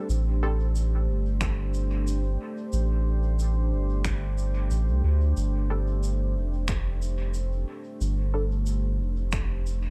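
An echo-heavy mix in a small room frames this spacious, meditative ambient dub excerpt at 91 BPM, where a deep, moody pad of detuned sawtooth unison with a sub octave and moving notch holds sustained chords from Am7 to Gsus2, and an up-front, round sub bass carries tube saturation beneath it. Shaker and finger snaps with brushes trail dub echo throughout, while an overdriven, punchy electronic kick sits in the background from 1.4 s. Muted, mellow chord stabs with a filter pluck and ensemble chorus appear briefly at the start and return at 5.7 s, their dub echo adding to the sense of space.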